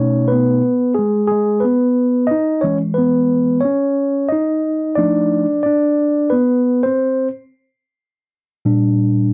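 A mellow tine electric piano plays alone through this nocturnal hip hop fragment. Its clean tone sits up front, as if heard through built-in speakers, and a wet studio reverb surrounds it. The chords move from B9 to E6 at 2.3 seconds, F6 at 5.0 and A#6 at 7.7, with a swing on the sixteenths.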